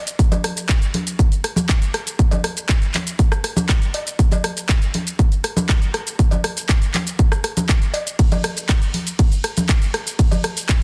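A layered pop drum kit opens at 0.1 s with handclaps, hi-hat, ride cymbal, rim click and shaker, its hats, cymbals and percussion sidechain-pumping and its snare softly clipped. A punchy, tape-warm electronic kick sits up front in a small room at a straight 120 BPM in 4/4, while ringing, close and dry cowbell and congas join at 0.3 s and drop out at 10.4 s. This dreamy, emotional house passage, cut from a longer piece, carries a dense, heavily limited modern master and a digital ambience.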